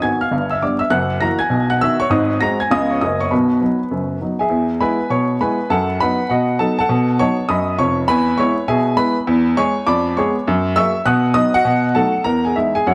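Swinging and exuberant, this short stride piano excerpt cut from a longer piece moves at a brisk 201 BPM in 4/4, with a 64% swing on the eighth notes. A single upright piano carries everything from 0.0 to 12.9 s, spanning from F1 up to A#6, its tone clear, woody and polished, with audible action noise that makes it feel intimate and up front. The harmony starts in B major, shifts to E major at 4.5 s, and returns to B major at 9.3 s, passing through colorful changes such as G7, F#9 and a diminished chord before landing on Emaj7. A wet spring reverb with a long 2.5-second tail surrounds the instrument. Vinyl crackle runs through the sound, lending an aged, record-like character.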